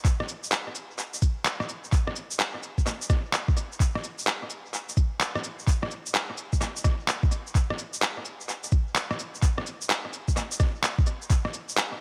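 A swung 16th-note groove at 128 BPM in 4/4 drives this melancholic, ghostly future garage fragment from a longer piece, where a soft, tape-warm electronic kick drum sits up front until 11.4 seconds while a muffled, pitched-down, sampler-style cluster of electronic shaker, rim click, cabasa and handclaps, compressed and overdriven with tape echo, sits up front alongside it until 11.9 seconds, all within an echo-heavy mix of light reverb and digital ambience.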